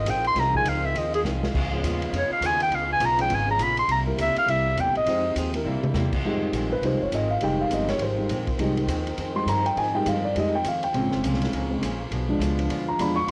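A breathy clarinet opens this brassy, sultry big band swing fragment, carrying the melody with a soft attack, subtone and vibrato over a clear saxophone section holding sustained chords in the background. Underneath, a woody pizzicato upright bass and a smooth, dark-toned drum kit with a punchy kick and medium-tuned snare set a quick, swinging minor-key groove, with short drum fills along the way. A mellow grand piano joins at 0.5 seconds, while a clean, picked hollow-body archtop guitar adds quiet accompaniment from the background. The clarinet steps away at 5.3 seconds, and from 6.2 seconds the piano takes the solo up front, its intimate sound carrying audible action noise. A vintage tape haze colors the horns, piano and guitar, plate reverb adds sheen to the horns and piano, and the short booth ambience gives the whole passage the feel of a home cassette recording.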